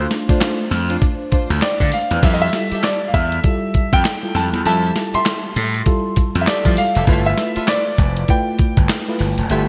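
A swung sixteenth-note groove drives this bouncy, flirty new jack swing excerpt, built on a gritty sampler-style drum kit with a thumpy kick, handclaps, hi-hat and crash under gated reverb, and an overdriven, punchy slap bass pushed up front. A mellow FM electric piano adds round, warbling chords through chorus while dark, woody strings with delay place lush stabs in the background, moving from Dm7 to Fmaj9 at 2.2 seconds and G13 at 7.1 seconds. From 1.6 seconds an intimate grand piano carries the melody with audible action noise and delay, all within a bright 1980s-style digital production.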